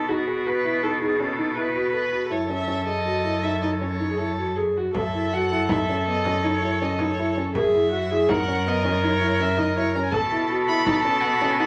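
Heard in a wet studio reverb, this restless, pensive piece of contemporary chamber music moves in an uneven 7/4 over chords that pass from B7 through F#m and F#7. A dark, floating viola sits up front as the second line, with a clear, biting bowed cello holding the bass and a felt-muted upright piano adding mellow, intimate arpeggios. A rich violin takes the melody with vibrato from 2.0 s, and a deep frame drum played with hard hands joins in the background at 4.9 s.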